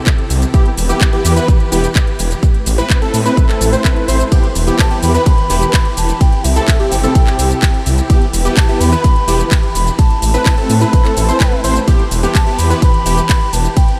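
Euphoric and anthemic, this festival progressive house excerpt moves at 127 BPM in a straight 4/4, set in E minor and cycling through C, Em and Am chords. A punchy, tape-warm electronic kick sits up front, joined by a house drum kit of handclaps, metallic hi-hats, ride cymbal and shaker, both re-recorded in a small room. A thick, beating detuned saw bass with a menacing edge pumps against the kick, while a sawtooth supersaw stab riff with a filter pluck and moving notch shares cassette-tape colour, sidechain pumping and diffuse ambient delay with a nasal, warbling unison lead playing arpeggios in the background. A studio string section holds sustained chords behind everything, its bowed ensemble tone expressive with vibrato and portamento, also pumping with the sidechain. A very quiet electronic swell at 3.6 seconds leads into a baroque flute melody entering at 4.8 seconds, its pure, woody tone with soft attack and vibrato roughened by vintage 12-bit sampler grit and trailed by diffuse delay, all set in light digital reverb.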